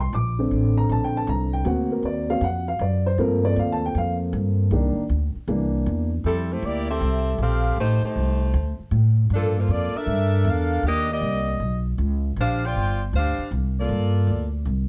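A swinging 4/4 at 157 BPM drives this energetic, brassy big band jazz excerpt, with a pizzicato upright bass holding the low end from start to finish and an intimate, boxy upright piano, audible action noise and long sustain included, soloing over the bass until 6.1 s. At 6.3 s a mellow saxophone section with light vibrato and a smooth top takes the melody as the harmony settles into F major, moving through rich extended chords such as Fmaj9, Gm9 and Bb69. The production is dark and lightly reverberant, keeping the woody bass and the horns up front.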